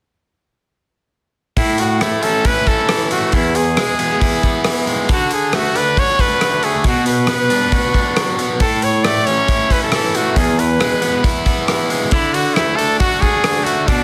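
Indie rock at 136 BPM in A major, jangly and carefree, cut from a longer piece, with all three parts entering together at 1.6 seconds and playing through to 14.0 seconds over chords moving from A to E, D and B minor. A bright, present trumpet carries the pop-style solo melody with vibrato and a tape echo, while a biting overdriven electric guitar sits up front with a picked riff. A cloth-damped, thuddy acoustic kit with a tight kick, rolled-off top, hi-hat and rim click plays close in a small room, and light reverb rounds out the sound.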